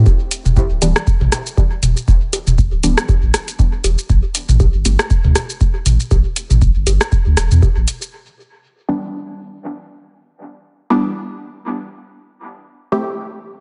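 A dry, dark-toned cut from a longer dub techno piece in E minor at 119 BPM with a light 16th-note swing, hazy and cavernous, where a clean, up-front sine sub bass pumps under a deep, tape-warm analog kick, metallic hi-hats, rim clicks and shaker with dub echo, and small-room electronic bongos and toms, while a muted, detuned sawtooth chord stab with phaser and echo sweeps through its filter over Em7 and A7(no3), then returns alone from 8.9 seconds over Em7 and Am7 after the bass and drums stop around 8.1 seconds.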